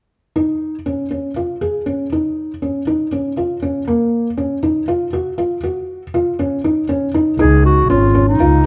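A felt-muted upright piano, mellow and intimate with audible action noise, plays up-front arpeggios from 0.4 seconds over C# and F#maj7 chords in this restless, shimmering piece of contemporary chamber music in 7/4 at 119 BPM. At 7.4 seconds, as the harmony returns to C#, a breathy solo clarinet in classical style enters with the melody, and a single bowed double bass with a soft sul tasto attack floats beneath. Light reverb and dark, warm production frame this short excerpt, cut from a longer piece.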